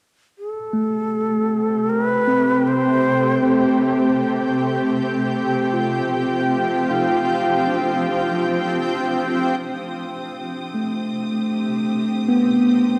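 Moving in a straight 3/4 at 78 BPM, this melancholic, spacious ambient piece opens with a breathy, bamboo-toned shakuhachi melody with vibrato and tape echo that stops at 3.8 s, while a gritty, overdriven tine electric piano through a combo amp plays echoing arpeggios under a fade-out, a shimmering, detuned ambient pad with chorus and a filter sweep holds sustained chords, and a tense, string-like drone with ring modulation sits in the background, the whole mix set in a wet cathedral reverb, until a smooth-topped violin section adds a faint bowed texture from 9.6 s as the harmony settles on C minor.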